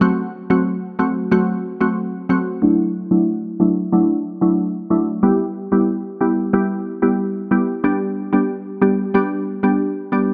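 A light reverb and a digital ambience frame this short dancehall fragment, cut from a longer piece, with a tough, bouncy mood in a straight four-beat metre. A single glassy wavetable pluck carries everything on its own from start to finish, sitting up front in the mix. Its tone is crystalline and nasal yet full-bodied, with a fast attack, a decaying tail, a noise layer, and a chorus and low-pass filter shaping the sound. The opening harmony rests on F#dim, and at 2.6 seconds the music moves into a new section where a filter sweep begins to work on the pluck. From there the chords step through Dadd9, Em and G, with the sweep continuing until the fragment ends at 10.3 seconds.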